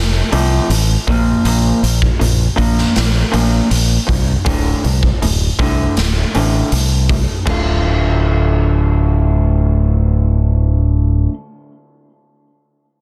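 A straight 4/4 pulse drives this brooding, angsty slice of quiet-loud alternative rock, cut from a longer piece. An electric guitar through a small old amp plays arpeggios throughout, its slightly broken-up, lo-fi tone compressed and carried on tape echo, moving from F to Bb5 and then D5 before settling on D minor at 7.5 seconds. A modern fingered electric bass sits up front with a bright, punchy, direct sound for the whole 11.3 seconds. A raw garage drum kit of kick, snare, hi-hat, toms and crash comes in at 0.3 seconds and drops out at 7.6 seconds, saturated and gritty with a rolled-off top, a punchy kick and a pumping room around it. The mix has a small room reverb and a dense, heavily limited modern master, which gives the short passage a close, pressing weight.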